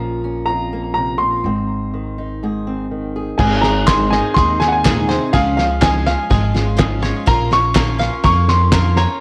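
This indie folk excerpt opens with a clear upright piano carrying the melody up front, its woody, polished tone touched with audible action noise and a digital delay. Beneath it sit a fingerpicked steel-string acoustic guitar and a thumpy, pizzicato upright bass on gut strings. In Bb minor at 124 BPM in a straight 4/4, the mood is stirring and yearning, with the chords moving from Bbm through Ab and Db before returning to Bbm. At 3.4 seconds the arrangement builds as a shimmering, octave-doubled twelve-string acoustic guitar enters in the background, along with a bright, twangy bluegrass banjo playing arpeggios through its own digital delay and a cloth-damped drum kit whose muffled, gritty sound pairs a fat snare and tight kick with dark cymbals. Crisp group handclaps join in the background at 3.9 seconds. The recording sits in light reverb and small room ambience, colored by worn cassette tape with a warbly pitch drift.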